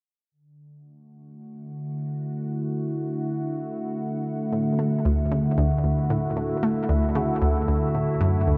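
A straight 4/4 pulse at 114 BPM drives this cosmic, expansive stretch of sequencer-driven space music in D major, where an evolving, warbling wavetable pad with phaser sustains chords from 1.5 seconds under a filter sweep, joined at 4.5 seconds by a round, detuned analog pluck riff with chorus and tape echo, all soaked in a dreamy cathedral reverb with a 5.5-second tail.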